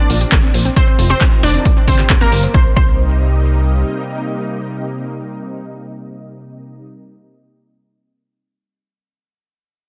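A straight pulse drives this short cut from an uplifting trance track, with a punchy, tape-warm kick up front and a drum machine of handclaps, hi-hat and tambourine, everything but the kick pumping against it as the drop opens. A funky, wave-folded analog bass and an arpeggiated pluck in the background play briefly, while a detuned, lush unison pluck carries the soaring melody, shadowed by a higher phased pluck line in the background. A silky, string-like analog pad with ensemble chorus and vibrato sustains chords until 6.9 seconds, and the plucks continue with tape echo in light reverb in a dense, heavily limited mix.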